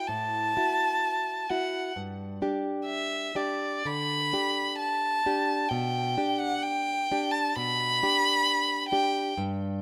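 Under light reverb in a rough home-demo mix, this lyrical, warm romantic duo in G major drifts at a rubato 66 BPM, with a rich, bowed solo violin up front singing the melody between D5 and B5 with vibrato, soft attacks and expressive portamento until 9.3 seconds, while a fingerpicked classical nylon-string guitar with fresh strings, also up front, accompanies from G2 to G4 through a rootless Dadd9, G and G/B before carrying on alone to 9.8 seconds in this short cut from a longer piece.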